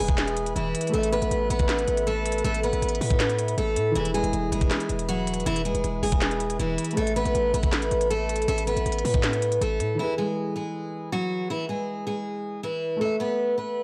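A picked steel-string acoustic guitar carries a warm, up-front melody from the first moment, backed by a faint electronic downlifter and a soft, felt-muted upright piano in the background. This dreamy, triumphant hip hop and trap fragment, cut from a longer piece, runs at 159 BPM in 4/4 with a half-time feel, in E major, tuned to A4 = 435 Hz. It moves between E and Asus2 chords. A trap drum kit with a knocking kick, sharp snare, crisp hi-hats and handclaps sits up front with vintage 12-bit sampler grit, alongside a punchy, heavy 808-style bass with a fast attack and decaying tail. A dark analog pad holds deep, detuned chords with a slow attack, chorus and a moving notch. The drums drop out at 9.9 seconds and the bass and pad at 10.0 seconds, leaving the guitar and piano together under light digital reverb in a dry, gritty, cassette-tinged recording.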